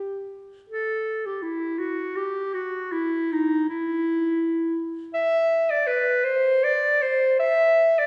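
Unfolding in a free, rubato 3/4 at around 80 BPM with uneven beats, this brief excerpt from a longer classical piece presents a lone clarinet, bright and up front, ranging from Eb4 to E5 across its 8.1 seconds. The mood is meditative and mournful, and the playing is expressive and classical in style. A wet concert hall reverb with a 1.9-second decay places the listener further back in the room, lending the solo line a spacious, lingering halo.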